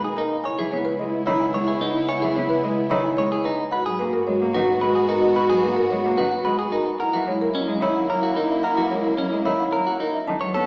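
Hypnotic and bright, this cut from a longer classical minimalist pattern piece moves at 110 BPM in 3/4, with a buzzing, woody marimba struck with medium hard mallets carrying the melody over clean, compressed electric guitar arpeggios placed up front, while a mellow alto flute with a pure straight tone traces a second line. Beneath them a lush symphonic violin section holds sustained chords, a bowed double bass section anchors the bass, and a single distant cello, expressive with vibrato and portamento, enters at 0.6 seconds to accompany through shifts from C#m7 to G#m9 to F#13. A wet recital hall reverb sets the ensemble further back in the room, with a small-speaker sound.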